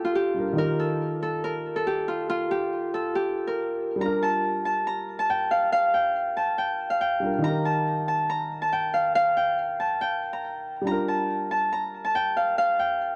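Eerie and melancholic, this half-time hip hop piece moves at 140 BPM in 4/4 in G minor, tuned slightly low to A4 = 437 Hz. A fingerpicked Celtic harp carries the melody up front, its acoustic, ringing tone touched with delay as it ranges from F4 to Bb5. Beneath it, a dark concert grand piano plays smooth, mellow accompaniment with deep bass and short sustain, giving it a vintage cast well behind the harp. The harmony rests on Gm7 and Eb, and a new section begins at 4.0 seconds and runs until this clip from a longer piece ends at 13.2 seconds. Light reverb and studio ambience frame a warm production with nothing above 10.4 kHz.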